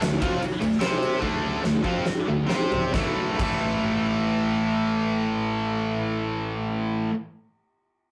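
A rough rehearsal-room recording with warm saturation and a small, wet room reverb frames this brief, powerful hard rock clip, cut from a longer piece and moving in a straight 4/4 between 131 and 154 BPM, slowing down over its first 2.9 seconds as a drum fill rolls in from 1.2 seconds. Three picked, distorted guitars drive the riff from start to finish, an overdriven one and a tight one up front and a scooped, double-tracked high-gain guitar in the background, over a growling, punchy fingered bass, as the chords move from D5 and C5 to A5 at 2.9 seconds. The huge arena kit, with its fat snare, punchy kick and bright cymbals, plays only until 3.5 seconds, leaving the swaggering guitars and bass to carry on alone.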